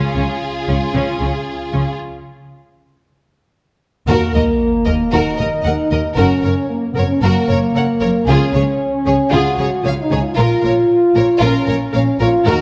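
Cinematic, epic orchestral film score in Eb minor at 115 BPM, dark and dramatic in mood, heard as a short cut from a longer piece. Two violin sections carry a lush, vibrato-rich melody and second line over a focused viola accompaniment, while an up-front French horn section holds dark, vintage-toned sustained chords. Woody cellos and double basses anchor the bass from 0.2 seconds, the cellos sitting in the background. The opening builds over Db and then breaks on a chordless stretch from 2.0 seconds, before an impact at 4.1 seconds lands on Ebm with a bright triangle and a huge sub drop. From there the harmony moves through Gb, Db and Bbm, the strings and horns continuing together through a moderate scoring-stage reverb.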